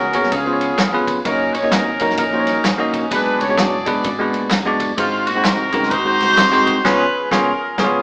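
Uptempo gospel at 129 BPM in F# major, swinging its eighths with a reverent, uplifting spirit, this short cut from a longer piece moves through C#7, F#6, Bm6 and G#7 before landing back on C#7. A clear, tight horn section carries the melody with light vibrato and a soft attack, sitting up front yet sounding distant and roomy in a jazz style. Beside it, a bell-like, bright tine electric piano plays clean, direct accompaniment across a broad range. Underneath, a fingered electric bass stays round and dark in the background, while an acoustic drum kit with dark cymbals, a medium-tuned snare and a punchy kick drives the groove, joined by a very quiet tube shaker and group handclaps until 6.8 seconds. The whole band plays live in one room with a wet stone-room reverb and a small-speaker sound, and closes with a band accent from 6.8 to 8.0 seconds.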